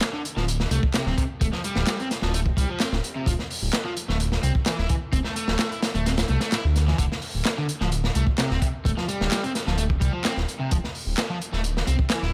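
A faint mains hum sits under a studio reverb in this gritty, energetic breakbeat excerpt, where a crunchy acoustic drum kit with a tight kick, medium-tuned snare and hi-hat sits up front with a saturated, rolled-off top, while layered electronic handclaps with a tape-warm tone stay in the background. A deep, rumbling detuned saw bass enters at 0.4 seconds, dark and sustained with a beating, saturated edge. Over it, a bright, double-tracked overdriven electric guitar plays a picked riff coated in vintage 12-bit sampler grit and dub echo, moving between dominant and major-seventh colours before the harmony drops out at 10.7 seconds.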